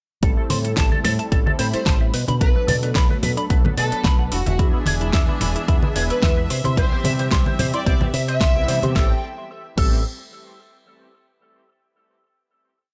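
A punchy four-on-the-floor electronic kick and a pop kit's fat snare, metallic hats, finger snaps and crash drive this sensual, cosmic nu-disco piece at 110 BPM with a light sixteenth-note swing in A dorian, as soft-handed congas sit in the background, an octave-jumping fingered bass with an envelope filter pumps against the kick, a twangy envelope-filtered guitar repeats its riff through analog chorus and tape echo, and round, detuned synth brass stabs share space with a very quiet ring-modulated unison pluck arpeggio, before a dark, intimate violin section adds short answering phrases from 1.7 s, a lush symphonic string pad joins at 4.6 s, and the piece settles onto a final A minor seventh chord at 9.0 s.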